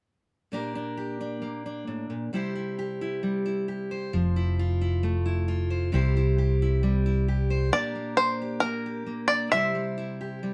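Folk at 133 BPM with a warm, anthemic mood, built on a bright, full-bodied fingerpicked dreadnought acoustic guitar moving through Bb6, C and Fmaj7 from 0.5 seconds, joined by a dark, round, punchy amped electric bass at 4.1 seconds; as the bass drops out at 7.7 seconds, a twangy, percussive banjo played with fingerpicks takes the melody. All three parts sit up front in a moderate studio ambience as a band playing live in one room.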